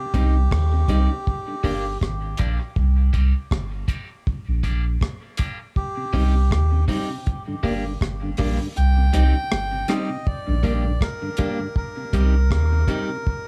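Dub reggae in C minor at 80 BPM with a swung, spacious and meditative feel, this short cut opens on a break with a filter sweep through 5.8 seconds, as a reedy, breathy melodica carries the tune through dub echo over a slightly broken-up electric guitar, a mellow tonewheel organ with slow rotary and chorus vibrato in the background, a round, up-front sub bass, and a dry, dark reggae kit of hi-hat, rim click and tight kick, whose kick drops out from 8.8 to 10.3 seconds, all cycling between Cm and Gm in a small room.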